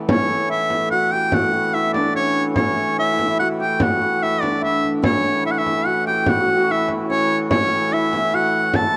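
A bright, up-front shawm carries the melody of this rustic, festive medieval dance, its folk-style line marked by vibrato, soft attacks and scooped notes over a straight 3/4 at 146 BPM in A mixolydian. A shimmering, ringing hammered dulcimer plays a second line, a dark, nasal hurdy-gurdy holds a reedy, wheel-bowed drone, and a frame drum played with soft hands provides the percussion. Close, detailed microphones capture this cut from a longer piece in a moderate recital-hall reverb.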